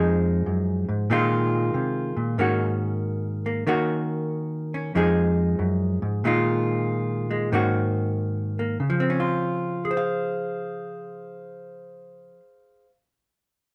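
A swung 4/4 lilt carries this short solo jazz excerpt, cut from a longer piece, with a sophisticated, playful mood. A lone clean, fingered hollow-body electric guitar sits up front with a dark tone, ranging from F2 to F5 as it moves through Fm7, Bb7sus4, Ab9sus4 and Ebm7, then returns through Fm7, Bb7sus4 and Ab9sus4 before settling onto Dbmaj7 at 8.8 seconds. Moderate studio reverb gives the guitar a touch of room around it.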